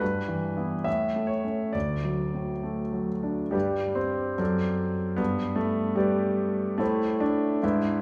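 Classical romantic character piece for solo piano, lyrical and warm in a flexible rubato 2/4, where a clear, intimate concert grand sits up front with deep bass and audible action noise, moving from D major into G major at 3.5 seconds, all within moderate concert hall reverb in this brief excerpt cut from a longer piece.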